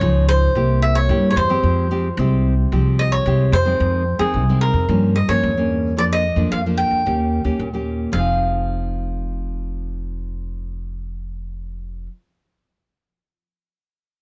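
A light reverb gives this short cut from a longer samba and choro piece an intimate, close-up sound, with each of the three acoustic instruments placed up front. The mood is nostalgic and bittersweet, moving at a straight 111 BPM in 4/4 in F minor, tuned slightly low to A4 = 438 Hz. The picked cavaquinho carries the melody from Ab4 to G5 with a mellow yet crisp tone. Beneath it, the fingerpicked nylon-string guitar supplies full-bodied accompaniment with the deep classical character of fresh strings. The upright bass, plucked pizzicato on steel strings, sounds woody and anchors the low end from F1 to G2. The harmony opens on Dbadd9 and C7, settles onto Fmadd9, moves through a new passage at 3.8 seconds with Gm7b5, Bb/F and Eb7, and returns to Fm7 at 8.1 seconds.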